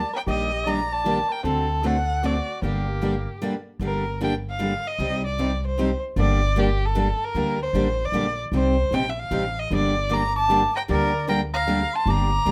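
A light reverb gives this short cut from a longer piece of acoustic string swing in the jazz manouche manner a gentle sheen. The piece moves at 153 BPM in a swung 3/4, in G minor, with a virtuosic, swinging mood. A bowed, nasal violin with smooth, even vibrato carries the melody up front throughout, and an upright bass plucks woody, thumpy gut-string lines beneath it. Two picked steel-string guitars supply the accompaniment: a bright, boxy parlour guitar with fresh strings and a dreadnought set further back in the background. A breathy, close-miked soprano saxophone adds a jazz-style second line with scooped notes. It falls silent at 3.4 seconds, where a brief break occurs, and returns at 10.1 seconds. The harmony opens on Ebmaj7 and D7 before settling into alternating Gm and Cm.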